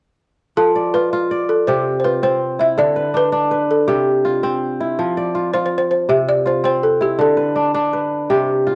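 In a straight 12/8 lilt at 109 BPM, this hypnotic, warm fragment of West African string and xylophone music in F lydian sets a bright, ringing, up-front kora playing fingerpicked arpeggios beneath a woody, round balafon melody struck with soft rubber mallets, both parts colored by cassette tape and plate reverb within a small, reverberant home room, with the balafon dropping out at 7.9 s while the kora rings on to 8.8 s.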